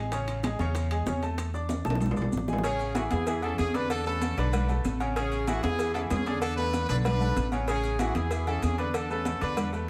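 Festive and sunny, this salsa excerpt moves at a brisk 190 BPM in a straight 4/4, in A major, swaying between Amaj7 and E7sus4 throughout. A bright upright piano carries the accompaniment from the start, intimate and polished, with audible action noise, while a woody pizzicato upright bass with steel strings sits up front. Behind them, a bed of background percussion fills out the groove: high-tuned, thin-skinned congas with a vintage, band-limited tone, round low-tuned bongos and cowbell played with soft hands in a close, dry space, ringing metal-shell timbales and agogo bells, and grainy, mellow maracas. After a drum fill from 1.7 to 2.6 seconds, a punchy, tight horn section enters up front at 2.6 seconds to take the melody, its pop-style sound dressed in plate reverb and tape echo. A moderate studio reverb ties the ensemble together in a polished sound.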